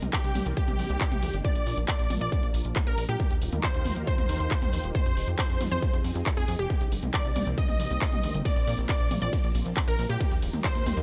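Uplifting trance at 137 BPM in Eb major, soaring and euphoric, this excerpt rides a Cm7–Bb–Ebadd9–Fm7 progression as a huge, detuned supersaw lead carries the melody between G4 and Eb5, shadowed by a very quiet, ring-modulated unison pluck in the same range. Underneath, a punchy, wave-folded analog bass and a silky, chorused string pad in the background pump with sidechain compression, and the lead pumps too while trailing digital delay. A distorted electronic kick sits up front beside a techno kit of handclaps, metallic hi-hats, ride cymbal and toms, the whole mix set in a digital ambience.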